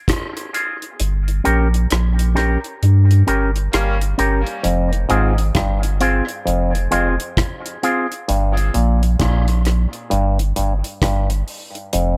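Swung sixteenths at a slow 66 BPM in 4/4 set up this deep, hypnotic dub reggae excerpt over Fm, Gdim and Gm chords, where a dry, dark kit of hi-hat and rim click mutes its tight kick from 1.0 to 4.6 seconds, a round sine sub bass sits heavy and up front, a clean, twangy picked electric guitar with an envelope filter, high-pass filter and tape echo plays from 0.5 to 8.1 seconds, a distant, roomy horn section with light vibrato calls out briefly at 3.7 seconds through tape echo, and from 4.6 seconds a hollow, nasal, stringy clav riff played through a combo amp and tape echo carries the groove, all within light reverb and studio ambience.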